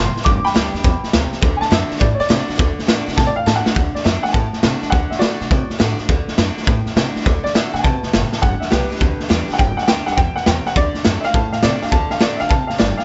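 Rockabilly in D mixolydian at a swung 206 BPM, rowdy and upbeat, cut from a longer piece. A worn, slightly detuned upright piano with short sustain carries the melody and solos through the opening 3.8 seconds, supported by boxy, picked steel-string acoustic guitar with finger squeak in the background and thumpy, woody pizzicato upright bass on gut strings. Up front, a saturated, gritty garage drum kit with a punchy kick, pumping room sound and rolled-off top drives the tune, with fills at 3.2 and 8.3 seconds, all set in light reverb and small room ambience.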